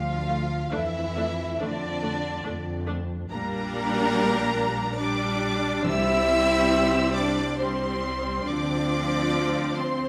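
Moving in a rubato 3/4 at about 70 BPM, this warm, tender classical excerpt unfolds as a short passage lifted from a longer piece. A dark, woody symphonic violin section carries the melody high above the ensemble with lush vibrato. Beneath it a focused chamber violin section sings a second line, while the viola section, smooth at the top and placed up front, joins at 0.3 seconds as accompaniment. Rich, even cello and double bass sections anchor the bass through a harmony that moves from D minor toward C and settles on Dm7. Timpani with medium mallets and plastic heads sound close and dry in the background between 5.8 and 7.1 seconds, and the strings sit in a recital hall reverb with a 1.8-second decay.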